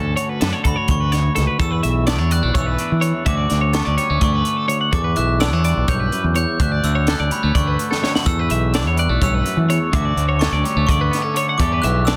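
Opening on clean, twangy picked electric guitar accompaniment, a compressed twelve-string electric guitar picking arpeggios and an overdriven, growling fingered bass set up front, this bright, wistful math rock and midwest emo piece in 7/8 at 252 BPM in D major moves between Dmaj7, E7sus4 and Em7 as a crisp, gritty fusion kit with a high-tuned snare and tight kick joins at 0.2 s and fills at 7.9 s, while a dark, bell-like glockenspiel struck with brass mallets carries the ringing melody from 0.7 s, set in light reverb with a dense, heavily limited modern master.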